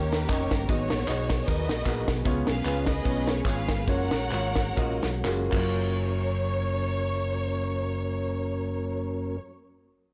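A round, punchy fingered electric bass sits up front in this reverent, soulful fragment of uptempo gospel with a swung feel, joined by a tight funk drum kit with a high-tuned snare and a clear, short-sustain grand piano. A lush, bowed string section carries the melody from a distance, while a mellow tonewheel organ with key click, a slow rotary speaker and light overdrive holds chords in the background, and tambourine and group handclaps add live-room color. The music slows between 2.3 and 5.8 seconds, a drum fill starting at 5.2 seconds closes out the kit, and the whole recording sounds blown-out and overdriven under light reverb.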